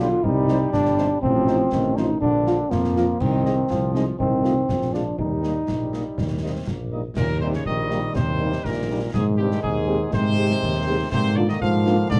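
A proud, festive military-style march for wind band in Eb major at 121 BPM in a straight 2/4, this excerpt opens with the bright, tight trumpet section carrying the melody over an up-front, clear euphonium second line with a soft attack, dark French horns in the background, mellow sustained trombone chords, and a mellow tuba bass with light vibrato, joined at 0.2 seconds by concert bass drum, snare and dark clash cymbals in a small room, the whole set in light reverb with a dark production as the harmony moves from Cm through F7/A and Bb to settle on Eb before shifting to Abmaj7 at 9.1 seconds.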